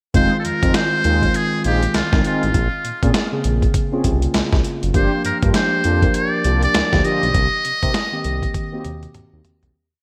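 A hard-swung drum-machine beat drives this short, confident new jack swing piece, its dusty, sampler-style kit pushed up front with a thumpy kick, medium-tuned snare and gritty overdrive, all washed in gated reverb. Underneath, a smooth sawtooth-and-triangle synth bass bounces through a swung synth-funk line full of muted ghost notes and chromatic approach notes, with vibrato and a ring-modulated edge. A mellow tine electric piano adds clean, syncopated chord stabs in drop-2 voicings with grace notes, while dark, detuned synth brass sits in the background with short chorused stabs and a filter sweep. Out front, a trumpet with a metal mute plays a buzzy, thin, jazz-style solo built from call-like motifs, with scooped notes, light vibrato and a trailing delay. The punchy single verse moves from Fm7 through Bbm9 and Gm7 to Cm7, and the bright 1980s-style digital production sits in a lush hall ambience before a fade-out begins at 7.3 seconds and a drum fill closes the piece from 8.5 seconds.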